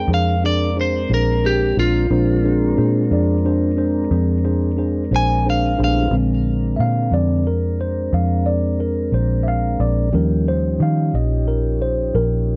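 A bright, twangy electric guitar at the edge of break-up carries the melody with vibrato for the first 6.1 seconds of this laid-back, soulful slow blues in 12/8 at 60 BPM. A mellow tine electric piano with phaser then takes the solo. Beneath them, a dark, round, foam-muted fingered bass sits up front, while a soft tonewheel organ holds flute-like sustained chords with key click through a slow rotary speaker, moving from Bb9 to Eb9 at 10.1 seconds. This short cut from a longer piece has a dry, close 1970s-style studio sound.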